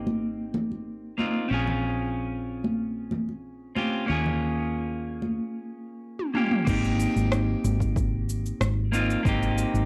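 A dark, scooped clean electric guitar, picked up front with cassette tape and tape echo, opens this smooth, relaxed sunset chillout excerpt at 93 BPM alongside a foam-muted fingered electric bass, moving through Abmaj9, Bbm9 and Eb9sus4 chords while warm acoustic congas play until 5.3 s. A drum fill at 6.2 s brings in an overdriven, layered deep house drum kit with cabasa, crash cymbal, rim click and toms, joined at 6.7 s by a punchy electronic kick sitting in the background, both treated with small room reverb and cassette tape. The whole piece has the light reverb of a home recording on cassette.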